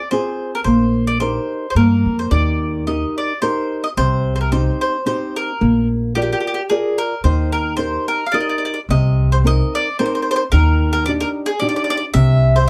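A lilting 3/4 pulse at 110 BPM with gently swung eighths carries this romantic, lively Italian folk serenade, which moves from Eb major into C minor at 8.9 s. A picked mandolin with round, double-string tone sings the melody up front over a small, fingerpicked nylon-string guitar, and a dark, woody pizzicato upright bass joins at 0.7 s. Close, detailed microphones and light reverb give this fragment of a longer piece an intimate, warm presence.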